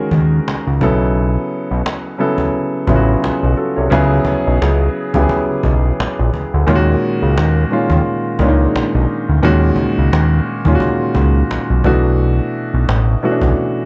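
A lightly swung 87 BPM groove in 4/4 sets this introspective, sultry neo-soul R&B excerpt in motion, where a fat, detuned analog bass with a moving filter notch sits up front beside a clear, polished grand piano voicing chords like Ebm11, B9sus4 and Dbm7, while a woody, distant cajon played with hard hands sounds from a large room under studio reverb.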